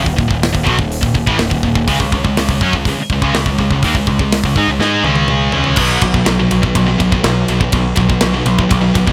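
A lightly reverberant, up-front studio sound carries this relentless, heavy metal excerpt at 123 BPM, where a bright, high-gain distorted guitar riff sits forward over a dark, sludgy overdriven guitar in the background, a growling picked bass with overdrive, and a tight acoustic kit with a medium-tuned snare that plays a fill from 4.8 to 5.8 seconds, as the chords move from E-flat minor and D-flat power chords to a B power chord at 5.8 seconds.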